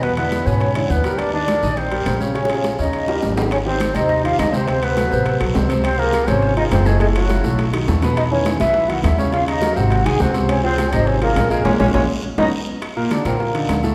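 A muted trombone carries the melody of this danceable, sophisticated Afro-Cuban jazz excerpt at a brisk 206 BPM in 4/4, with an airy flute with vibrato on a second line, a deep-voiced grand piano comping up front, and a woody, growly pizzicato upright bass. Bright congas, ringing metal-shelled timbales, a raspy guiro and very quiet, tight high-tuned bongos drive the groove, with drum fills around 2.4 s and 7.7 s and a band accent from 11.7 s, during which the flute stops at 12.5 s. The veiled, soft-attack trombone then takes a short solo from 12.8 s, all set in the lush reverb of a concert hall.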